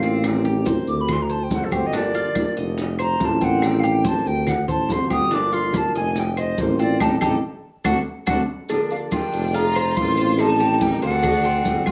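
Warm and sultry, this short cut from a longer Cuban son and guajira piece moves at 142 BPM in 4/4 with a straight feel, in G minor. A bright silver concert flute carries the melody up front, airy with vibrato, a soft attack and plate reverb, and takes a solo through the opening 8.7 seconds. Underneath, a punchy tuba holds the bass with a smooth top, while a dark, fingerpicked nylon-string guitar sits in the background and a Cuban tres adds mellow, metallic arpeggios on its doubled strings. The percussion blends close, dry congas with thin skins, distant and round bongos and cowbell, woody claves and grainy maracas, with a band accent and a drum fill closing out the solo. From 8.9 seconds a lush, bowed violin section enters with a second line over a cycling progression of Am7b5, D7, Gm7 and F7sus4, all set in a small room with moderate reverb.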